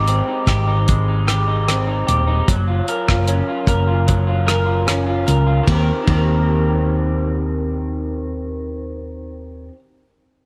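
A small room's light reverb and lossy compression artefacts give this brief cut from a longer indie and bedroom pop piece a hazy, homemade sound. The mood is nostalgic and dreamy, moving at a relaxed straight pulse in four. An electric guitar through a small old amp carries the accompaniment, slightly broken-up and lo-fi, its picked chords colored by analog chorus and a warbly pitch drift. Beneath it, a mellow fretless electric bass sits up front with a dark, round, punchy tone. A damped 70s drum kit, dry with a tight kick, plays kick drum, hi-hat, ride cymbal and rim click until about 6.3 seconds, after which guitar and bass carry on to the end. The harmony drifts from Abmaj7 to Gbmaj7 before settling on Eb6 as a new section begins at 5.7 seconds.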